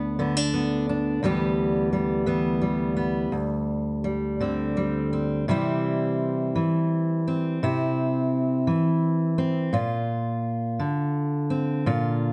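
Unfolding in a 6/8 that stretches and breathes with a rubato feel, this brief fragment of a longer folk piece sets a hopeful, nostalgic mood at a slow, unhurried pace. A lone fingerpicked steel-string dreadnought acoustic guitar carries everything from 0.0 to 12.3 seconds. It spans from a deep D2 up to G4, and its tone is full-bodied and warm, sitting up front in the mix. The opening passage moves through Bm/D, Em7/D and D7sus4 over a steady low D. At 5.5 seconds the music shifts to a new passage on C, then lands on a Bbadd9 at 9.7 seconds. A light reverb gives the guitar a gentle sense of space, and the top end stays soft and mellow.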